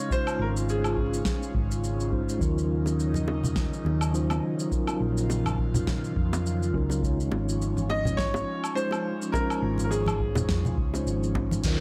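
Sunset chillout at 104 BPM with a swung sixteenth feel, wistful and relaxed, moving between Dbmaj7 and Ebm7 in a dry, gritty recording with light reverb. A mellow tine electric piano with tape echo and an airy, breathy pad treated with chorus and phaser hold the harmony throughout, while a bright concert grand piano with analog delay plays the melody in two phrases, stepping back at 2.1 seconds and returning at 7.9 seconds. A dry, deep electronic kick and a fat-snared deep house kit of hi-hat, shaker and woodblock drive the groove under a round, punchy hollow-body bass up front, with bongos and congas joining in the background at 2.9 seconds before a brief downlifter closes this cut from a longer piece.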